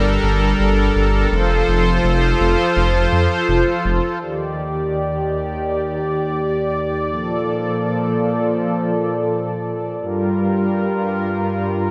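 Nostalgic yet driving, this synthwave fragment moves at 83 BPM in a straight 4/4, tuned to A4 = 438 Hz and cut from a longer piece. A smooth, detuned sawtooth pad with chorus and tremolo holds soft-attack chords from Gmadd9 and F through Ebmaj7, Bbmaj7 and Gm7, while a deep, rumbling, tube-saturated saw bass beats with unison detuning up front until it stops at 4.0 s. A lush hall reverb gives the whole an arena-sized sound, and the bright pad carries on alone to 11.9 s.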